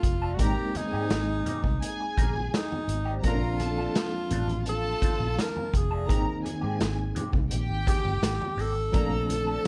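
A straight 4/4 groove from an up-front vintage drum kit with a boomy kick and a round, foam-muted electric bass carries this smooth, lush 1970s-style soul excerpt, where a breathy, intimate tenor saxophone sings the melody over a gritty overdriven reed electric piano with fast tremolo, a slightly broken-up guitar riff with wah comes in at 0.2 seconds, and a bowed studio string section with portamento and slapback echo joins at 0.4 seconds alongside very quiet, distant congas, as the harmony moves between Abmaj7 and Bbmaj7 in a dry, close sound.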